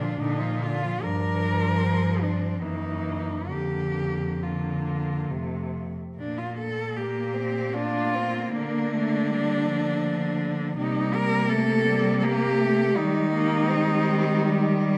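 A rich, up-front solo cello carries the melody with vibrato, a soft attack and expressive portamento, leading a serene, tender classical ensemble of four cellos in Bb major, moving in a rubato 3/4 at 64-83 BPM. Behind it, a more distant cello holds a smooth, even second line and a warm cello adds expressive accompaniment, while a close, up-front cello anchors the bass. The whole blend sits in a recital hall reverb, with harmony shifting through a brief Gb7 color before the second section begins at 6.2 seconds in this extract from a longer piece.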